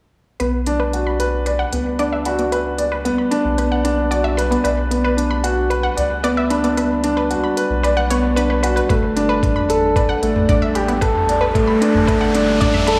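Set in a moderate concert hall reverb, this cinematic, intimate piano and strings electronica in B minor at 113 BPM builds over a woody, up-front upright piano riff with digital delay, lush, detuned sawtooth pluck arpeggios colored by cassette tape, sidechain pumping and delay, a round, deep analog bass that also pumps, and a smooth-hatted deep house kit with toms, before a muffled, thumpy electronic kick enters at 8.9 seconds as the harmony moves from Bm to Gsus2 and an electronic riser joins at 10.4 seconds.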